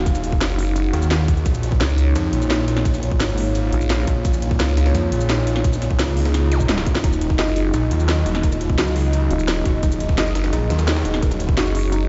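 Opening on dark analog pads and a snarling distorted saw bass that pump against a tight, up-front electronic kick, this futuristic, mechanical excerpt of dark technical drum and bass layers a cracking-snare kit with crisp hats and a very quiet, gritty breakbeat sampler kit beneath a nasal vowel-sweep wobble bass, before a faint swell and zap at 6.5 seconds ushers in soft, round pluck arpeggios with lush chorus and digital delay over a deep ambient pad, all heard in a stone-room reverb.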